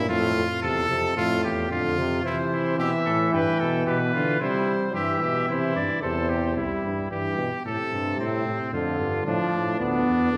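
A reverberant church or concert-hall space surrounds this short cut from a longer classical canzona for brass ensemble, whose imitative writing feels elegant and joyful. A brilliant, up-front trumpet carries the second line from the start, over a clear trombone accompaniment and the close-miked, warm tone of the bass trombone, with light vibrato in the upper brass. A distant, roomy cornet enters with the melody at 2.2 seconds and drops out at 6.6 seconds, as the harmony moves into minor-tinged chords for the closing passage.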